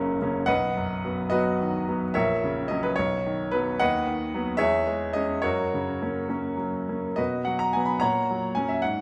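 Warm and hopeful, this short excerpt from a romantic character piece for solo piano moves in a lilting 6/8 with flexible rubato. A bright baby grand sits up front, its brilliant, natural tone carrying long sustain from deep bass notes to a glistening upper register. A resonant recital hall surrounds the playing, as the harmony settles at home before stepping through F#7/A#, B/D# and C#m/E toward F#.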